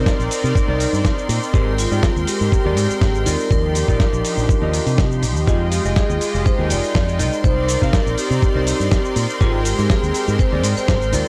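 A dry, gritty hardware sound with little reverb frames this sensual, sleek nu-disco excerpt, cut from a longer piece. An up-front, thumpy, compressed electronic kick and a sampler-style soul kit of cabasa, hi-hat and medium-tuned snare drive a lightly swung groove, while a punchy fingered electric bass with an envelope filter sits prominently beneath them. A ringing vibraphone struck with hard mallets, its motor off, carries the melody through vintage 12-bit sampler grit and analog delay. A smooth, detuned sawtooth pad with chorus holds the harmony, a dark, clean electric guitar riff with subtle chorus sits in the background, and a lush, bowed symphonic violin section sustains a high C6 behind it all, pumping with sidechain. The chords move through Cm9, Abmaj9, Ebmaj9 and Fm9 before returning to Cm9 and Abmaj9.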